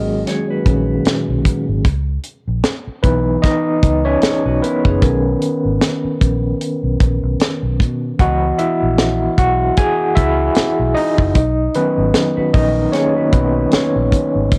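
Lush 1970s-style soul at 76 BPM in 4/4, with a swung sixteenth feel, this smooth, cinematic excerpt from a longer piece is built on Bmaj7 and C#m7 chords. An overdriven tine electric piano, barky and gritty with medium tremolo and tube saturation through a combo amp, sits up front and carries a solo across the whole passage, while a tight funk drum kit with a high-tuned snare and tight kick drives alongside it from 0.3 seconds. A round, foam-muted fingered bass plays throughout, and a mellow, compressed electric guitar riff sits in the background until 5.2 seconds and returns at 12.4 seconds, all within a small-room home cassette recording.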